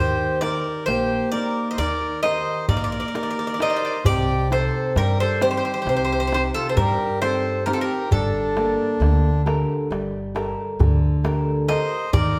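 A stone room's wet reverb surrounds this live band, heard together in one space in a short cut from a longer piece of Greek folk music in a straight 9/8. The mood is wistful and melancholic. The bouzouki carries the melody up front, its picked double strings bright and metallic with some octave-doubled courses ringing through. A reedy single-reed accordion with dry tuning sings a clear second line, while a fingerpicked flamenco guitar, also up front, gives warm accompaniment. An upright bass, plucked on steel strings, adds a woody, thumpy low end, and from 0.2 s a large, deep clay darbuka with a natural skin joins, played with soft hands and heard close. The harmony moves from Eb into Cm at 4.1 s, where a second section begins, and settles on Gmadd9 at 8.1 s.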